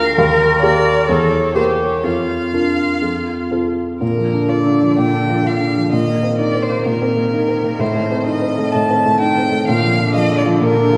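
A rich, expressive solo violin sings the melody up front with vibrato and portamento in this stormy, dramatic classical-period piano trio movement, a brief cut from a longer piece played with pliant rubato, as a smooth, even bowed cello carries a second line and a warm baby grand piano supplies accompaniment, all heard from further back in a wet scoring-stage reverb.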